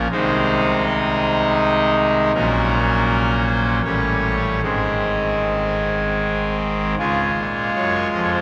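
A pipe organ sounds its trumpet stop up front, brassy and bright with a baroque voicing and a touch of chiff, playing a reverent, serene chorale in a three-beat metre with uneven, rubato phrasing. Its lines span a deep bass to a high treble and bloom into a long, wet cathedral reverb. This brief cut from a longer piece moves through passing harmonies before a new section begins at 7.0 seconds, where it comes to rest on the home chord.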